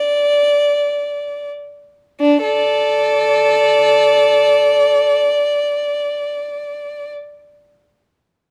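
The recording has a dark, warm sound with a light reverb around a single violin placed up front. This is a classical, baroque-style suite movement for unaccompanied violin, dance-like and flowing, played in free time with the instrument tuned to A4 = 437 Hz. The violin has a rich, focused tone with vibrato, and one bowed player moves between D4 and D5 from the first moment to 7.1 seconds. The opening passage slows down as it runs to 2.2 seconds, and a new section follows until 6.3 seconds. This short portion is cut from a longer piece.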